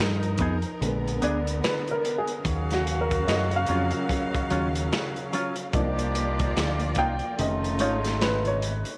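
This sultry, late-night R&B and neo-soul fragment opens with a dark, mellow baby grand piano taking the solo, its intimate tone carrying audible action noise and a short sustain, over bowed studio strings holding clear, focused chords with vibrato. Beneath them, a deep fingered electric bass sits round and up front, while a gritty, saturated breakbeat kit of tight kick, medium-tuned snare, hi-hat and finger snaps swings the 16ths at a slow 73 BPM in 4/4, its top end rolled off. At 0.4 seconds a clean, compressed semi-hollow electric guitar joins with a second line, its hollow-body tone marked by a warbly pitch drift. From 2.5 seconds a vintage, pop-style horn section adds punchy stabs with light vibrato. The harmony moves through Fm7b5, Bb7b9, Ebm9, Cm11 and F7alt, set in a small room with light reverb and some lossy compression artefacts.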